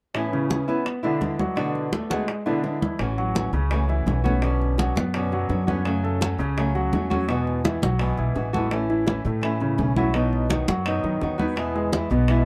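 A nylon-string guitar fingerpicks with audible finger squeak over soft-handed, low-tuned bongos and ringing hard-hand congas, joined by arpeggios on a deep-bassed concert grand and, from 3.0 seconds, a woody, thumpy pizzicato upright bass up front, in a relaxed, sunny Cuban son and guajira excerpt at 168 BPM in A major with dark spring-reverb ambience.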